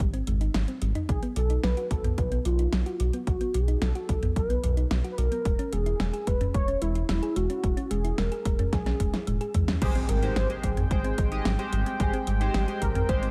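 A dry, close sound with little reverb frames this nostalgic, uplifting synthwave piece, cut from a longer track and moving at 110 BPM in a straight 4/4. A round, tine-like synth pluck with a mellow chorus, cassette-tape grit and tape echo spins arpeggios under a filter sweep, while a deep, dark analog bass sits up front with sidechain pumping. A punchy, overdriven electronic kick and a pop kit with a fat snare, metallic hats, crash and toms drive the groove, both re-recorded in a small room. At 1.1 seconds a velvety lead enters with detuned unison, vibrato, chorus and delay, carrying the melody over chords that move from Abmaj7 through B7 to E6. A drum fill leads into the new section at 9.8 seconds, where a smooth, slow-attack pad with sidechain pumping and glossy, retro polysynth stabs with tape echo join, marked by a very quiet electronic impact as the harmony returns to Abmaj7.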